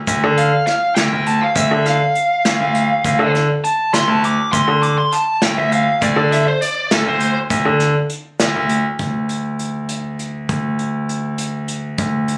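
Driven by a straight 5/8 pulse at 202 BPM counted in eighths, this progressive instrumental band piece in D minor feels tense and brooding, cut from a longer work. A bright concert grand piano carries the bass line between D2 and D3 from 0.1 seconds to the end, its deep, polished low end sitting up front. An acoustic drum kit played with bundle sticks supplies hi-hat, a tight kick and a medium-tuned snare, while a grainy, band-limited egg shaker stays in the background until 8.7 seconds. A biting, overdriven lead guitar, picked and up front, takes a solo from 0.4 to 7.4 seconds, ranging from A4 to D6 over a D5 power chord before the harmony drops away at 7.5 seconds. The sound carries light club reverb and the roomy character of a phone recording.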